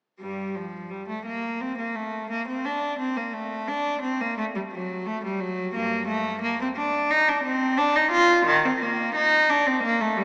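Classical, a baroque-style suite movement for unaccompanied cello in G minor, unfolds solemn and flowing at 87 BPM in 4/4 with a rubato feel, tuned to A4 = 437 Hz. A single bowed cello plays solo from 0.2 to 10.2 seconds, ranging from G2 to F4, with a rich, reedy gut-string tone in period style, placed close and up front. A long church reverb surrounds it, and the small-speaker quality of the sound colours this fragment cut from a longer piece.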